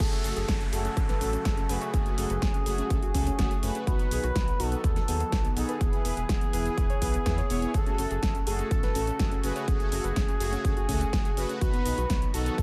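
This dreamy, expansive progressive house drop at 124 BPM in F# dorian opens with a punchy, up-front electronic kick, a big-room dance kit with a huge snare, metallic hi-hats, cabasa and crash cymbal, and a deep, dark analog bass, while a background downlifter runs until 3.9 seconds. Above them, a smooth, nasal synth lead sings an expressive melody with vibrato, chorus and dub echo, alongside soft supersaw stabs, a gentle wave-folded pluck playing arpeggios in the background, and an evolving supersaw swell holding sustained chords over F#madd9, B and E. The bass, lead, pluck, stabs and swell all pump against the kick, and the mix stays dry with little reverb.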